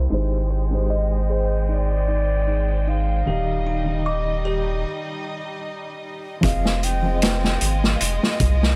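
A deep, round analog bass anchors this brooding, hypnotic trip hop excerpt. It sits under a muted felt piano treated with tremolo, tape echo and a filter sweep, and under smooth bowed chords from a violin section. An airy baroque flute carries the melody with vibrato and tape echo from 0.9 s, while a delicate, tinkling music box plays filtered, echoed arpeggios until 4.8 s, before a brief break and the entry of a punchy vintage drum kit with hi-hat, kick and snare at 6.4 s, the whole mix sitting in a small room reverb behind a low-pass filter.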